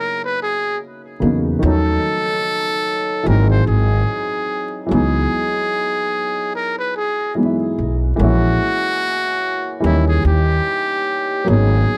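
Nostalgic and cosy, this lo-fi hip hop excerpt moves at an unhurried 73 BPM in 4/4 with a gentle swing on the sixteenths, cut from a longer piece. A trumpet with a metal mute carries the melody up front, its solo tone buzzy, thin and breathy with a soft attack, giving the jazz-style line a whispered, intimate quality. Beneath it, a dark upright piano plays the accompaniment throughout, mellow and slightly detuned, with a cassette-tape colour. The upright bass enters at 1.2 seconds and sits prominently in the mix, plucked pizzicato on steel strings with a growly, woody bite. The harmony drifts through jazzy seventh chords, from Bmaj7 through a rootless C#m11 to a closing D#7b9. A light reverb surrounds a dry, gritty hardware sound, with transformer saturation and vinyl crackle adding to the worn, homely atmosphere.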